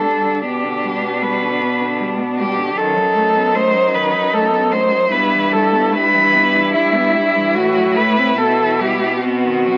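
A lyrical classical passage for cello ensemble opens at once with all four bowed cellos sounding together, cut from a longer piece and carrying an elegiac, melancholic mood in a three-beat metre with uneven, rubato pulse. The melody sits up front on a bright, focused cello played close with vibrato, while a second cello with a rich, smooth top carries an inner line beneath it. A third rich cello supplies accompaniment from the background, and a clear, even cello holds the bass from a more distant position. The harmony moves through G/B, B7/F#, Em/G and F#m7b5/A before settling on Em/B and a tense B(b9) at 9.2 seconds, where the passage breaks off at 9.8 seconds. The sound is that of a very old 78 rpm record, with vinyl crackle, a dulled top end and a moderate studio reverb around the players.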